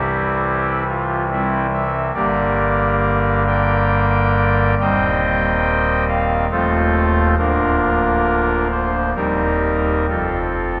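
A solo pipe organ voiced on a soft reed oboe stop carries this brief, chorale-style classical passage in Bb major, its romantic voicing placed up front in the sound. The mood is majestic yet serene, moving at 68 BPM in 3/4 with uneven, rubato beats that give the phrases a breathing, unhurried quality. The organ spans from a deep D1 in the bass up to G5, and the soft, reedy tone of the stop sits clearly over a wet church reverb that lingers for about 2.5 seconds. The harmony drifts from C through Gm and Cm/Eb to F7/Eb, settles on Bb/D near 7.4 seconds, then passes through Cm7/Eb before arriving on F at 10.1 seconds. Lasting just under 11 seconds, this fragment is cut from a longer piece and captured in a resonant church or concert hall setting.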